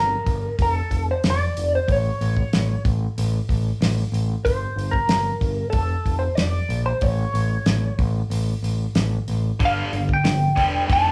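A band playing live in one room fills a large studio with moderate reverb on this gritty, swaggering classic rock excerpt at 93 BPM in a straight 4/4, moving through Gm, F6 and A with stretches where the harmony drops out. A dark, slightly broken-up lead guitar with wah carries the melody from A4 to A5 over a growling, overdriven fingered bass and a damped 70s drum kit with a fat snare, tight kick and rolled-off top that enters at 0.3 seconds. At 9.6 seconds a tight, bright distorted guitar joins with a picked riff on G5.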